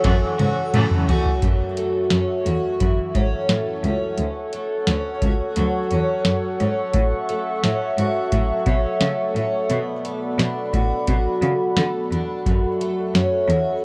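Dream pop in F# minor at 87 BPM, hazy and melancholic, this worn, tape-warbled fragment opens with a booming drum machine fill under a faint clean electric guitar and a tremolo-touched semi-hollow guitar that stop by 1.4 seconds, leaving shimmering octave-doubled twelve-string arpeggios with lush chorus and digital delay, a nostalgic detuned pad, and a distant bowed cello with vibrato over up-front dry drums with a deep kick and metallic hats, moving from F#m7 through Dmaj7, A6 and Bm7 back to F#m7.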